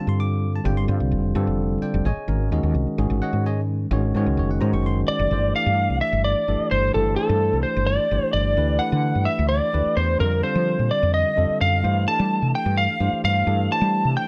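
A lightly driven, slightly broken-up lead guitar carries the melody from 5.1 seconds, joined by an airy, vibrato-laden concert flute in the background, over a round, hollow-toned fretless bass with subtle chorus and bell-like, bright tine electric piano chords in this funky, nocturnal jazz excerpt in 7/8 at 258 BPM, moving through suspended ninth chords on G, A-flat and F within a dark production with light digital reverb.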